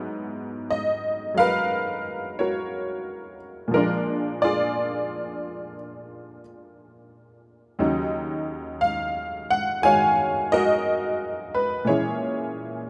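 A detuned, jangly honky-tonk upright piano plays alone and up front through this brief, moody solo jazz passage in Eb minor, swinging slowly at 59 BPM in 4/4 over chords moving from Abm9 through Bb7 and Ebm9 to Bbm7b5, its short-sustain, vintage tone spanning low to high registers and set in a large studio reverb.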